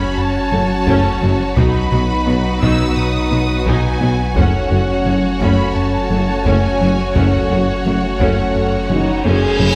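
A rubbery, bouncy square-wave bass riff drives this tense, vast hybrid orchestral and electronic film cue at 86 BPM in F# dorian, with lush violin sections carrying a smooth melody and a focused second line over background violas, a hollow chorused pad, mellow French horns, a deep saturated sub bass, a very quiet cello, tuba and double bass section entering at 0.5 seconds, close, dry taiko drums from 0.9 seconds, and an electronic reverse cymbal rising at 9.0 seconds under a drum fill, all set in a moderate concert hall reverb.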